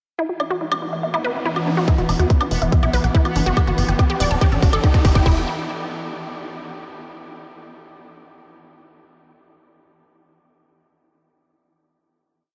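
A layered programmed kit of closed and open hats, high woodblock and crash enters at 0.4 s in this alien, hypnotic psychedelic trance piece and later breaks into a drum fill at 3.6 s. An up-front, tight electronic kick pounds four-on-the-floor from 1.9 s, joined by a dark, galloping sixteenth-note sequencer bass. Above them a lush, detuned unison pluck plays a pumping acid riff with delay, a 12-step loop drifting against the bar, while a swarming, granular drone with vintage 12-bit sampler grit holds tense chords and a background riser carries the build. A very quiet, metallic FM wobble bass adds short, saturated answering phrases, and a huge ambient reverb soaks the mix in a dreamy haze before the closing chord.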